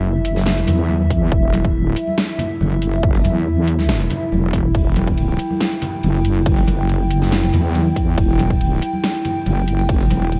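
A half-time 4/4 groove at 140 BPM drives this dark, cavernous deep dubstep cut in E minor, where an up-front, saturated wobble bass with chorus sits over a single Em chord beneath a moody, detuned analog pad with ring modulation and chorus, while a layered, tape-warm electronic kit of huge snare, metallic hats and ride joins at 0.2 seconds, distant conga hands with dub echo drift in the background from 0.4 seconds, and a punchy electronic kick lands at 1.1 seconds, all in light digital ambience.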